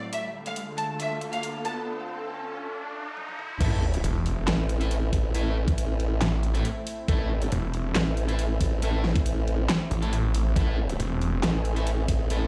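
A growling, detuned saw bass and a wobbling formant-swept bass dominate this menacing slice of heavy half-time wobble dubstep. The wobble bass crashes in with an overdriven knocking kick at the drop at 3.6 seconds over an Am chord, and the saw bass joins a moment later, while a dubstep kit with a huge snare and bright hats drives the track throughout. Before that, a brief, expressive violin section with vibrato and tape echo floats over a lush, phased unison pad on Dm, as a riser and sub drop build through a short break and drum fill. Once the drop hits, a double-tracked fuzz guitar adds bright stabs alongside the pad, all set in a stone room's light reverb as if blasting from a big sound system.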